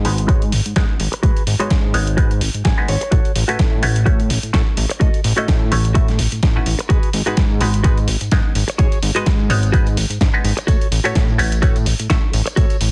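A fat, detuned sawtooth bass sits up front with tube saturation and a sweeping low-pass filter, pumping against a punchy, tape-toned electronic kick, gritty sampler-style hi-hat and snare, a very quiet tambourine, a hollow, nasal muted clav through a phaser, and a clean, picked direct-recorded electric guitar riff that adds a short fill at 2.4 seconds, all drifting between G#m7 and A6 in this groovy, nostalgic slice of filtered disco house, cut from a longer piece, with a dense, heavily limited master and little reverb.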